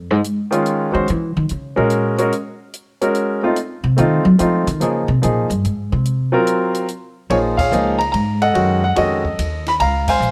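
The upright bass leads this short passage from a longer cool, swinging jazz piano trio piece, taking a solo for the first 7.3 seconds with a woody, thumpy pizzicato tone from gut strings placed up front in the mix. A compact cocktail drum kit sits lower in the balance, sounding dry and natural with dark cymbals, a high-tuned snare and a punchy kick, alongside hi-hat, ride and crash. A clear baby grand piano carries the melody, also up front, with a natural sound and short sustain. The trio moves at 144 BPM in a swung 3/4 in Bb minor, passing through chords such as Gb7, Ab7sus2, F7 and Bbm7 before shifting toward Ebm9b5 and Dbmaj7 in the closing section. The band strikes accents together at 7.5 and 10.0 seconds, all within a light reverb.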